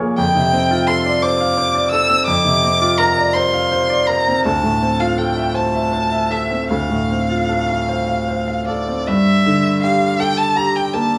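A single violin carries the melody, its rich, vibrato-laden bowing smooth and even as it sings high, from D5 up to E6, close up front. This is a hazy, mysterious impressionist duo in the classical tradition, cut from a longer piece and set in G dorian with a slightly raised tuning of A4 = 441 Hz. It drifts in a rubato 6/8 at roughly 50-58 BPM counted in dotted quarters. A baby grand piano supplies the accompaniment from the first moment, ranging from D2 to F5 with a clear, intimate tone, long sustain and audible action noise that keeps it natural and near. Its harmonies move through F69, Bbadd9/F, Dm9 and Dm7 before the music shifts into a new section at 9.1 s over Gsus2. Both players sit inside a stone room whose wet reverb lingers for about 0.9 s.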